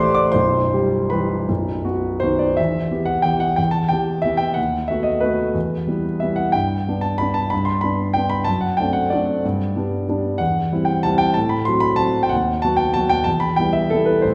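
A solo concert grand piano opens this wistful, nostalgic classical waltz excerpt in E minor, played with rubato in 3/4 at 150-198 BPM, its intimate tone carrying deep bass and audible action noise as it moves from a brief opening phrase into a second section at 2.6 seconds, where the harmony drifts through G, C/E and F#dim/A before settling back on Em, all set in a recital hall reverb heard from further back in the room.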